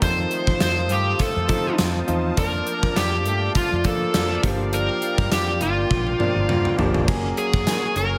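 A dark, overdriven lead guitar carries the melody up front in this glossy, romantic 1980s-style pop excerpt at 102 BPM in Bb major, with a lightly swung 16th feel and a gated 80s drum kit punching through with a bright stone-room snap and a drum fill from 5.9 to 7.1 seconds. A round, amped fretless bass and a clear concert grand piano with deep lows fill out the middle, while a compressed, direct-recorded clean guitar riff and an evolving sawtooth pad with a filter swell sit in the background, the piano, riff and pad all sharing the lead's shimmer reverb. The chords move from F7 through Bbmaj7/F and Gm7 before shifting to Gbadd9 at 7.1 seconds as the passage is cut off.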